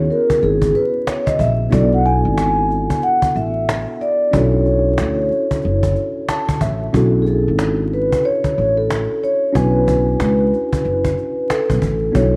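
Soft-mallet vibraphone carries the melody up front, its ringing, metallic tone softened by a slow motor vibrato, tape echo and a vintage, band-limited color, in this nocturnal, cool jazz-hop excerpt at 92 BPM with a swung 16th feel in B dorian. Beneath it, a mellow, clean tine electric piano voices C#m11 moving to Bm11 and adds a brief fill at 6.0 seconds, while a woody pizzicato upright bass sits close and a snappy cajon with snares keeps time in a live room. Light reverb and small-room ambience surround the whole piece, which is colored by worn, warbling cassette tape with pitch drift and vinyl crackle.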